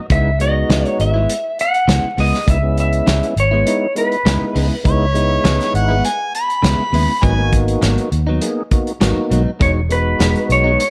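Straight-eighth soul blues at 101 BPM in 4/4, smoky and mournful, cut from a longer piece and moving from C#m7 to G#m7 to Emaj7. A round, punchy, foam-muted bass and a soul drum kit with a tight kick and rolled-off top sit up front beneath a fat tonewheel organ with key click and a slow rotary speaker, while a bright, direct-recorded clean guitar adds picked stabs through analog chorus. A compressed lap steel carries the melody with slide, volume swells and slapback echo, then drops out as a clear, lightly overdriven harmonica with scooped notes and light vibrato plays a second line from 4.9 to 7.5 seconds, and the steel returns at 9.6 seconds.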